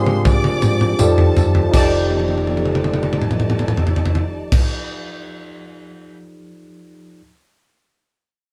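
Cinematic and silky, this brief cut from a longer lush 1970s-style soul piece moves in a straight 4/4 over Fm69 and F13 chords, with a band playing live in one room. A worn, slightly out-of-tune tine electric piano sits up front and carries on to 7.2 seconds, joined by a round, punchy hollow-body bass, bowed violins with expressive vibrato adding a second line, a very quiet dark French horn section holding soft-attack chords, and a jingly vintage tambourine in the background. A tight, mid-forward funk kit of crash cymbal, toms and a punchy kick rolls through drum fills, and the drums stop at 6.2 seconds.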